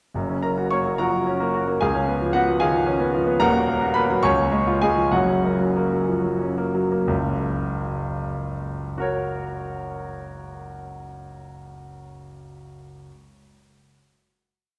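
A long, wet cathedral reverb surrounds a clear, present grand piano heard up front, playing alone from start to finish in this short, complete classical virtuoso study in F# major, tuned to A4 = 439 Hz. In a rubato 6/8 at about 58-76 BPM by the dotted quarter, the mood is heroic and sparkling: a tune in filled octaves rides over rippling figuration, moving from F# through C#7, D#m and C# back to F#. The playing slows from 2.6 seconds, and at 7.1 seconds a final chord rings on into the resonant hall.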